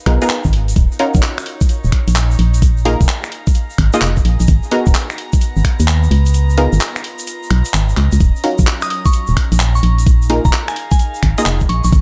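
UK garage in a bouncy, skippy two-step groove at 129 BPM, with a swung 16th feel, this excerpt rides on a knocking electronic kick and an up-front, hollow, organ-like FM bass that pumps against it, while a house kit of finger snaps, handclaps and hi-hat, tape-warm in a large room, joins a grainy egg shaker. Punchy, detuned sawtooth-and-square chord stabs with chorus and tape echo move through Ebm7, Bb7sus4 and Abm9 over a dark, nasal, reedy chamber string section that fades in beneath everything, also pumping. The kick drops out from 6.3 to 8.2 seconds, and at 8.8 seconds a soft, pure FM bell melody enters with its own chorus and echo, all set in a digital ambience with a muted top end.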